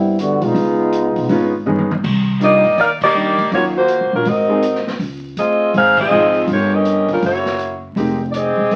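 A dark, vibrato-laden saxophone section carries the melody from 2.4 seconds, sitting up front in this brassy, sultry big band swing excerpt in C minor at 162 BPM. Before it arrives, a tight trombone section with soft attack and light vibrato opens the piece as the featured voice, with a drum fill from 1.7 to 2.0 seconds leading into the next section. A woody, thumpy pizzicato upright bass anchors the bottom throughout, while a swinging drum kit with a boomy kick, medium-tuned snare, hi-hat, toms and crash cymbal sits low in the mix. A clear upright piano with long sustain adds accompaniment from 1.3 seconds, and full-band accents land at 3.0 and 5.9 seconds over rich harmony moving through chords such as Cm11, Ebm9 and Dbmaj9#11. The whole recording has the crackle of a very old 78 rpm record, bathed in a wet studio reverb.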